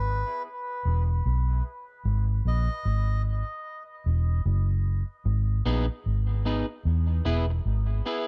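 A swung sixteenth-note feel in 4/4 at 75 BPM sets a slow, hypnotic pulse for this meditative dub reggae excerpt, which opens with a break running to 5.3 seconds. The vintage electric bass sits up front through the whole passage: dark, round and punchy, with a foam-muted, amped tone deep in the low register. A reedy, breathy melodica carries the melody over the first 3.2 seconds, its nasal, band-limited voice trailing a dub echo and sitting well back in the balance. From 5.7 seconds a twangy electric guitar at the edge of break-up adds fingered accompaniment, high-pass filtered and also sent through dub echo. The harmony moves from E5 through G#5 and Esus2 to G#m and back to E, all wrapped in a small room ambience.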